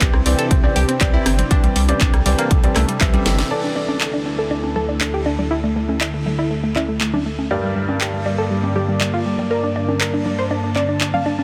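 Emotional and bittersweet, this progressive house excerpt moves at 120 BPM in a straight 4/4, drifting from Cadd9 to Dsus2 at 3.5 seconds and then to Gm. A lush, mellow sawtooth pad holds detuned unison chords throughout, with chorus and sidechain pumping, while a glassy, crystalline wavetable pluck spins bright arpeggios through a filter sweep, chorus and digital delay. A clear baby grand piano adds short stabs roughened by vintage 12-bit sampler grit and echoed by delay. A saturated sine sub bass and a punchy, tape-warm kick anchor the opening until a drum fill and band accent near 3.4 seconds, after which the house kit's cracking snare, handclaps, hi-hat and rim click carry on with overdriven congas and bongos sitting in the background. The dense, heavily limited master is bathed in light reverb and digital ambience.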